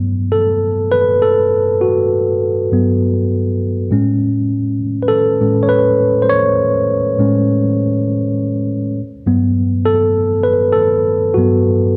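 A worn, slightly out-of-tune tine electric piano plays alone from 0.0 to 12.0 seconds in this smooth soul passage, moving from Gmaj9 to Amaj7 at 3.9 seconds and back to Gmaj9 at 9.0 seconds over a lightly swung 4/4 feel. The piano sits clean and direct, up front in the mix, with a slapback echo trailing its notes, while a moderate plate reverb and a dark, warm production give this short section, cut from a longer piece, a mellow glow.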